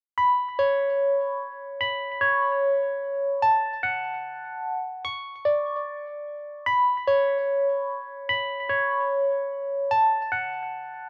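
A barky tine electric piano opens at 0.2 seconds, spinning arpeggios between C#5 and C#6, and it carries this brief, brooding hip hop fragment on its own. Its tone is bright and lightly overdriven, with a phaser and a delay colouring the notes, and it sits direct and up front in the mix. The half-time feel lends the passage a heavy, hard-hitting weight despite the lone instrument. The harmony moves from a suspended chord over a C# bass to F# minor, drops away briefly around 5.0 seconds, then returns to the same pair of chords before the cut at 11.1 seconds. A light reverb surrounds the part, and the overall sound has the rough character of a home demo mix.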